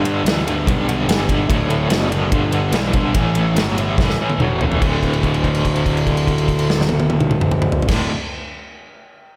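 A cranked, double-tracked stack guitar leads this swaggering, driving clip of blues rock and southern rock at 145 BPM in D major, its bright overdriven riff colored by tremolo and slapback echo as it moves from G through D and G to A5. A fuzzy, punchy picked electric bass and a big acoustic rock kit with bright cymbals and a punchy kick push it along in straight 4/4, until a drum fill at 4.0 seconds leads into a held D5 note that rings from 4.8 to 7.9 seconds. The whole trio sits in a lush hall reverb that gives it a big arena sound, and the clip is cut from a longer piece.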